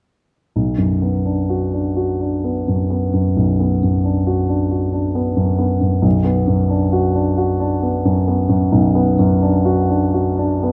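A dark, mellow grand piano sits up front from 0.6 seconds, playing a solemn, elegiac accompaniment on a B minor chord in a rubato 12/8 classical feel, captured by close, detailed microphones with a light reverb in this brief fragment cut from a longer piece.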